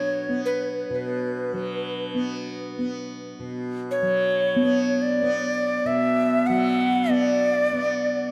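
A breathy, close-miked cedar flute in the Native American style carries the melody up front with a crisp, chiffy attack, vibrato and tape echo, floating over the buzzing, shimmering drone of a softly plucked tanpura and the dark, slow-beating metallic ring of a felt-mallet bronze singing bowl in this spacious, haunting excerpt of free-time world meditation music in B minor, set in a wet, echo-heavy plate reverb.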